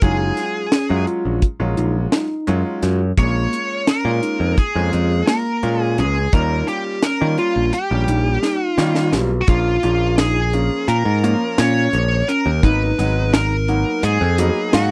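A distorted, high-gain lead guitar carries the melody up front in this brooding, intricate progressive instrumental in 9/8. It rides over a growly picked electric bass, a dry reggae drum kit with a high-tuned snare and tight kick, a brilliant grand piano with audible action noise and long sustain, and a tine electric piano whose tape-echoed arpeggios sit in the background of a close, 1970s-style studio sound, with a drum fill at 8.4 seconds leading into a new section at 9.5 seconds of this excerpt.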